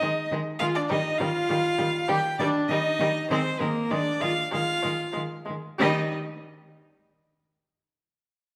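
A string quartet opens together on a brisk, restless classical-period movement in four, its straight pulse carrying an urgent edge in this excerpt cut from a longer piece. Each of the four single players bows with gut-string tone and a reedy, period-style sound. The first violin sits up front with the melody, rich and lightly touched with vibrato. Beneath it, the second violin adds a dark, nasal line from a distance, the viola fills the accompaniment with a warm, smooth, softly vibrato-tinged voice, and the cello holds a shadowy bass on Eb. The harmony moves from Ab over Eb to a bare Eb and then an Absus2 over Eb. At 5.8 s the harmony turns chordless, and the quartet stops near 6.1 s, with the chordless stretch running to 8.3 s, all of it set in a reverberant recital hall.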